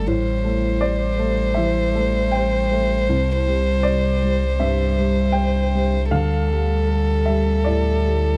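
Reflective and longing, this short, rubato neoclassical excerpt sets an intimate, airy-bowed single violin melody up front over a floating, pure cello line in the background, a worn, woody, slightly detuned upright piano accompaniment and a deep, punchy sine sub bass with a pitch-drop attack, all captured in a dry, close 1970s-style studio sound as the harmony moves from Am7 to C to Dsus4.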